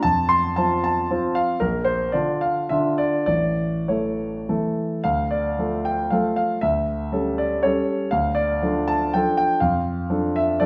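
Capricious and nostalgic, this brief classical excerpt is a romantic triple-time dance in D minor for solo grand piano, warm and up front, moving between 96 and 130 BPM with rubato and dotted rhythms, ranging from A1 to C6 in a moderate recital hall reverb, its harmony turning from F through Bb and A before settling into D minor around 5.0 seconds.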